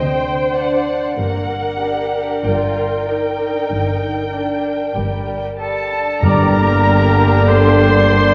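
Melancholic and yearning, this slow romantic orchestral passage, cut from a longer piece, unfolds in free rubato as a veiled, con sordino chamber violin section sings the melody over a muted studio violin section's second line, dark violas, lush cellos and distant double basses, with a ringing concert harp playing arpeggios in the background. At 5.6 seconds a clear oboe and a pure-toned small flute group add second lines, and at 6.2 seconds a mellow clarinet and a very quiet bassoon join, alongside brief, roomy French horn chords, trumpet section stabs and round, soft-mallet timpani. The whole passage sits in a reverberant recital hall and carries the worn, warbling pitch drift of old cassette tape.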